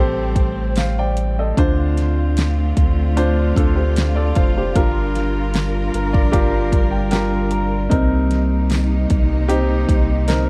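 A dark, warm small-room production carries this emotional, melancholic pop ballad, built around a clear, polished baby grand piano up front and a lush bowed string section with woody vibrato holding sustained chords. A deep, round sine sub bass sits forward, and an electronic, layered pop drum kit enters at 0.4 s with a punchy kick, fat snare and metallic hi-hat, soon joined by a jingly, very quiet tambourine. The piano plays a fill from 5.6 to 7.9 s as the harmony moves through minor seventh chords.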